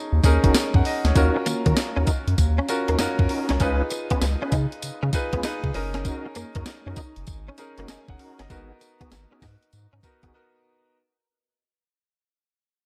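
Punchy and slick, this short cut from a longer new jack swing piece moves with a swung 4/4 groove and fades out across its whole length before a brief break at 10.3 seconds. A clean 12-bit drum machine sits up front with a thumpy kick, a medium-tuned snare, hi-hat and tambourine, its sampler-style hits re-recorded in a large room. Beneath it a round analog bass supplies deep, dark, sustained notes with a fast attack, while a clear concert grand piano fills in the accompaniment with an intimate, polished tone, audible action noise and long sustain. A tonewheel organ adds stabs from the background, lightly overdriven with key click, chorus vibrato and a slow rotary speaker. From 1.4 seconds a direct-recorded clean electric guitar plays a picked, compressed, scooped riff through an ensemble chorus, as the harmony moves from F#6 through D#m7 and C#7, back to F#6 and on to G#m7 inside a digital ambience.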